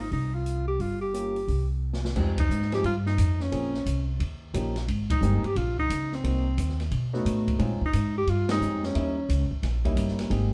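Small-group swing and bop jazz at a brisk 177 BPM in 4/4, with a swung feel on the eighth notes and a sophisticated, swinging mood, cut from a longer piece. A breathy alto saxophone carries the melody up front, its subtone and light vibrato giving it a soft, husky jazz-solo voice. Beneath it, a woody, thumpy pizzicato upright bass on steel strings sits prominently, while an acoustic drum kit with dark cymbals, a medium-tuned snare and a boomy kick plays crash, ride, hi-hat, snare and kick. A present grand piano with long sustain joins the accompaniment at 1.1 seconds, voicing extended harmonies such as minor ninths, major ninths and a dominant seventh flat nine. A drum fill at 1.8 seconds leads into a new section, band accents punctuate the phrases, and the group is heard from further back in a studio room with moderate reverb.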